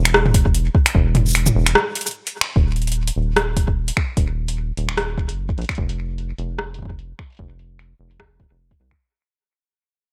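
Eerie and intricate, this IDM excerpt moves at 149 BPM in 4/4 with a light 16th-note swing. A rubbery, hollow square-wave bass with a nasal, resonant filter pluck sits up front beside an analog drum machine whose tape-warm cabasa, finger snaps, metallic hi-hats, rim clicks and toms are low-pass filtered and treated with delay, while a soft electronic kick enters at 0.3 seconds. After a break from 1.8 to 2.6 seconds the track begins fading out, all set in light reverb with a bright 1980s-style digital sheen.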